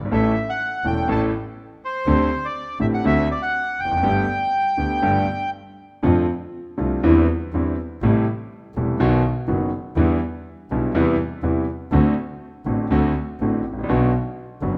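A rubato feel pulls at the 122 BPM pulse in 4/4 throughout this short tango excerpt, giving it an elegant yet passionate air. A reedy, vintage-toned bandoneon carries the melody up front from 0.1 s, singing in its upper register over chords that move from A through D7sus4 and D7 to Gadd9, before falling silent at 5.5 s. A clear, smooth concert grand piano holds the accompaniment for the whole passage, its deep bass reaching down low, while a single bowed double bass adds a rich, expressive line full of vibrato and portamento. From 6.0 s the piano and bass carry a second section alone, passing through F6, Am7, Em7 and Cmaj7/E to settle on Bm. Light reverb lends the performance a gentle sense of space.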